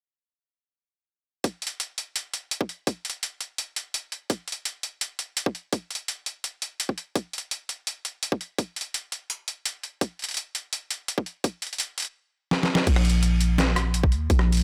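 A half-time drum and bass groove at 168 BPM starts at 1.4 seconds, pairing a gritty, pitched-down sampler-style kit of crash, hi-hat, rim click and medium-tuned snare with a tight, overdriven electronic kick filtered of its lowest end, both sitting up front in a dry, spacious, cinematic mix. After a drum fill at 12.5 seconds, the drop arrives at 12.9 seconds with a growling, buzzy 808-style bass spanning Bb1 to Eb2, its fast attack and decaying tail carrying this brief cut from a longer piece.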